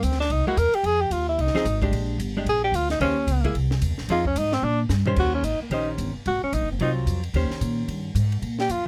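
A breathy, mellow tenor saxophone with vibrato and scooped notes solos up front through this relaxed, swinging excerpt of small-group jazz at 222 BPM in Eb mixolydian, over a woody, thumpy pizzicato upright bass on gut strings, a dark, clean, compressed hollow-body archtop guitar comping from 0.5 seconds, and a dry cocktail drum kit with dark cymbals, a high-tuned snare and punchy kick that plays a fill at 4.6 seconds, all captured close and detailed in a nearly reverb-free room.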